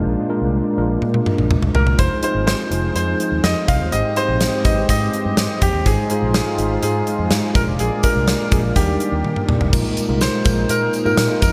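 This 1980s-style pop excerpt, cut from a longer piece, feels urgent and moody, its dreamy mix soaked in a huge ambient reverb. A mellow tine electric piano and a growly, amped fingered electric bass carry the chords from the start, while a smooth analog pad with a warbling, detuned chorus sits in the background. A gated drum kit with a tight kick, medium-tuned snare and bright cymbals enters at 1.0 seconds with a fill and stays up front, with another fill leading into the closing stretch. At 1.8 seconds a brilliant concert grand piano takes the melody, present and polished with a short sustain and a tape echo trailing its notes. The harmony moves through Fm7, Abmaj7 and Ebmaj7 before settling on a suspended Bb7sus4 at 9.7 seconds, where a distant, jingly tambourine joins in the background.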